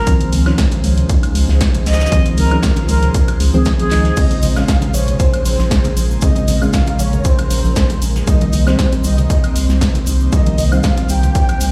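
A bright silver concert flute with analog delay carries the melody of this hypnotic, deep house excerpt in Bb dorian at 117 BPM until 4.2 seconds, when a breathy flute-like synth lead with vibrato and tape echo enters alongside a grainy egg shaker, over a hollow, organ-like FM bass up front, mellow FM electric piano stabs, an airy pad in the background moving through Dbmaj7, Bbm9 and Cm7, a punchy electronic kick, a tape-warm analog drum machine with claps, snare, hats, woodblock and crash, a distant brush kit, and close congas, all set in a stone room reverb.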